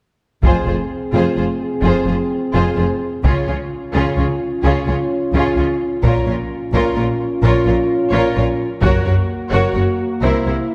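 Dark and dramatic, this cinematic orchestral film-score passage is cut from a longer piece and works as a build-up, moving at 129 BPM in 3/4 with a straight feel in F phrygian. A distant, bowed violin section carries the melody high in the background, while a lush symphonic violin section plays a second line beneath it and violas with an intense, smooth-topped tone fill out the accompaniment. Up front, a tight French horn section holds warm sustained chords, and the low end rests on a bright cello section and an expressive double bass section, both bowed with vibrato. A close taiko ensemble struck with hard sticks plays until 9.7 seconds, while the rest of the orchestra carries on to the end. The harmony steps through Fm, Db, Bbm and Gb before landing on C7 at 10.2 seconds, all set in a wet scoring-stage reverb that gives the ensemble a spacious, grand sound.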